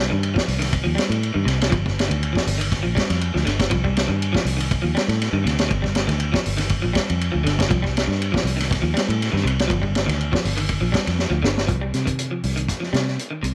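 A clean, picked electric guitar and a round, foam-muted fingered bass open this excerpt, joined at 0.2 seconds by a vintage acoustic drum kit, setting up a defiant, intense afrobeat groove at 120 BPM in 4/4 with a light swing on the 16ths. The music sits in C dorian and alternates between Cm and G7(no3). The guitar plays arpeggios from the background, while the bass, direct and amped with a warm tone, sits up front beside the drums. The kit has a mid-forward studio-room sound, with a punchy kick, a high-tuned snare, dark cymbals across hi-hat and ride, and a rolled-off top. A drum fill at 11.2 seconds leads into a new section at 11.7 seconds that lands back on Cm, and light reverb gives the whole mix a sense of space.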